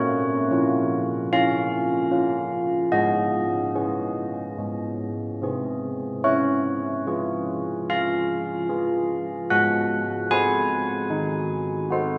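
Classical church-bell tune in a serene, festive mood: a solo carillon of bronze bells with a minor-third overtone and a padded clapper rings through a 12.2-second excerpt of a longer piece, moving from B-flat minor to an A-flat seventh chord, heard from further back in a cathedral with long, wet reverb.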